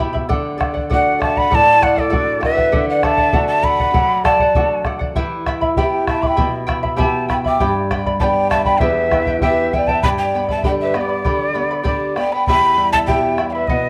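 A breathy cane quena with vibrato and a chiffy attack leads up front from 0.9 s, joined at the same moment by a mellow, hollow wooden pan flute set distant, over shimmering double-strung fingerpicked charango, dark flamenco guitar and a round, vintage-toned bombo in this earthy, festive Andean folk passage heard in a moderate recital-hall reverb.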